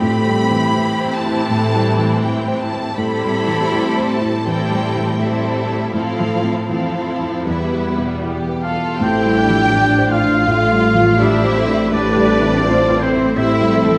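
A lush violin section carries the melody with expressive vibrato in this moving, sorrowful cinematic passage, cut from a longer piece and played with a free, rubato feel in four. Beneath it, a second violin line sounds distant and focused, while a viola section adds full-bodied accompaniment and a cello section holds a smooth, even bass close in the background. A concert grand piano with deep bass and short sustain sits in the background alongside a ringing, fingerpicked harp playing arpeggios over chords that move from Cmaj7/A through Fmaj7/A and Em. At 8.6 seconds a roomy solo oboe and a very quiet, airy flute section join with second lines, and at 9.0 seconds a tight, mellow French horn section adds sustained chords as a bowed double bass section settles onto a low A under G7sus4/A. A moderate scoring stage reverb gives the ensemble a spacious, enveloping sound.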